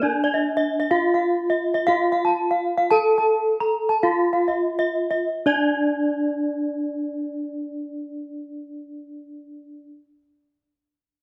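Gamelan music in a brilliant, shimmering mood, taken from a longer piece, with two bronze metallophones struck with horn mallets, one carrying the melody in its lower range while the other spins arpeggios above it. Their paired tuning produces beating tones that ring bright and airy up front, captured by close, detailed microphones in a moderate stage reverb. The pulse slows down through the first 5.3 seconds before a new section begins.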